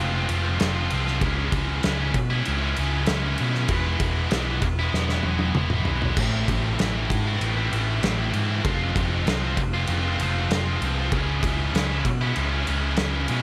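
A double-tracked, scooped high-gain guitar drives this angsty, cathartic stretch of quiet-loud alternative rock, its bright, distorted riff shifting through chords like Fm, C#m, E and Am over a straight 4/4 pulse. Underneath, a growly, overdriven picked bass adds punch, while a loose acoustic drum kit enters at 0.3 seconds with a punchy kick, dark cymbals and a pumping room sound, breaking into a fill from 4.9 to 6.2 seconds. All three parts sit up front in a studio reverb, and the passage is cut from a longer piece.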